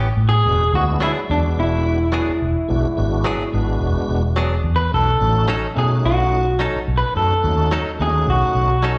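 Blues in 4/4 at 107 BPM with a swung sixteenth feel, this gritty, swaggering excerpt from a live gig moves from E9 to B9 as a round, foam-muted vintage bass sits up front beneath twangy, bright stabs from a direct-recorded clean guitar, a dark, slightly broken-up melody from a guitar through a small old amp, and a lightly overdriven tonewheel organ with chorus vibrato and slow rotary speaker, the guitars and organ carrying slapback echo in a recital hall reverb heard through the venue's PA.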